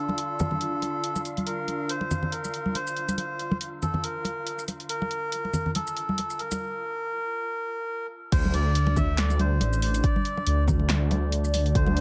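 A reedy, nasal melodica with dub echo carries the tune over a moody, detuned analog pad with chorus and a filter sweep, plus a breathy, wind-like noise layer in the background. Bright, dry congas and an overdriven deep house kit with a punchy snare, handclaps, hi-hat, shaker and crash set a swung, half-time feel in this brooding deep dubstep passage. The wind texture drops away at 6.6 seconds for a short break, and at 8.3 seconds the drop lands with a rumbling, saturated sawtooth bass up front and a deep, overdriven electronic kick.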